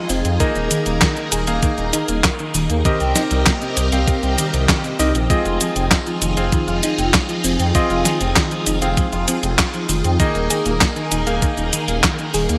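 A straight 4/4 pulse at 98 BPM from a thumpy electronic kick and an up-front 12-bit drum machine with fat snare, handclaps, cabasa and hi-hat drives this nostalgic synthwave excerpt in F minor, where a deep, rumbling detuned saw bass sits under lush string-machine chords pumping with phaser and chorus, a clear electric grand piano with a clangy low end adds delayed stabs, and a tine-like synth pluck and a slightly broken-up electric guitar riff sit in the background, all in plate reverb with a bright 1980s-style digital sheen as the harmony moves through Ebsus4, Cm7 and Fm7.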